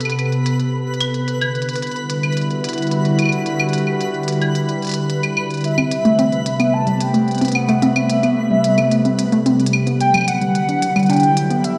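A hazy, lo-fi sound sits in a moderate plate reverb, as if played on a big sound system in a bare room, giving this melancholic, eerie IDM excerpt at 110 BPM in A dorian a cavernous, ghostly air. A warbling, detuned tape-like pad of sawtooth and triangle tones sits mellow and up front, holding slow-blooming chords that move between Am9 and Em9, while a faint FM granular texture twinkles above with an octave-up shimmer and long, reverberant tails. Crisp electronic hi-hats and claves tick along underneath, low-pass filtered and tape-softened, with the character of being re-recorded in a small room. At 5.6 seconds a nostalgic lead enters, its wave-folded blend of triangle, sawtooth and sine carrying vibrato, analog chorus and tape echo. Just after, at 5.8 seconds, a dark, dusty pluck of square and sawtooth waves with a noise layer and a filter sweep begins spinning arpeggios, its sharply struck, decaying notes smeared by cassette tape coloring and echo.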